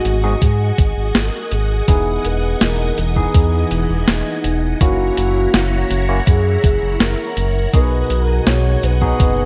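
Bathed in a lush hall reverb with a bright 1980s-style digital sheen, this cinematic, moody synthwave excerpt at 82 BPM sets a smooth, warbling portamento lead with vibrato and digital delay over a vintage string machine pumping through phaser and ensemble chorus, barky, lightly overdriven tine electric piano stabs, a round, deep analog bass up front, and a tape-tinged 12-bit drum machine of hi-hat and snare joined by a thumpy electronic kick at 0.4 s, over a progression of G#m7, Emaj7, F#7 and B6.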